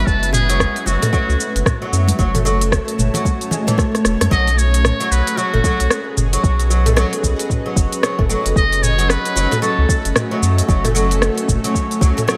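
Organic downtempo at 113 BPM in F# dorian, hypnotic and earthy with a swung sixteenth feel, this excerpt opens on a buzzy, metal-muted trumpet melody with vibrato and scooped notes, bathed in delay and shimmer reverb, which drops out at 10.1 seconds. Beneath it, a cloudy granular pad holds detuned, slowly blooming chords with sidechain pumping, a deep, round sub bass pulses up front, and a woody, plectrum-plucked fretless oud plays bright arpeggios through digital delay and shimmer reverb. A soft electronic kick and a crisp, up-front electronic kit of hi-hat, cabasa, rim click and toms carry the groove, with hard-handed bongos and congas tucked in the background until a drum fill at 3.8 seconds leads the harmony from F#m to B.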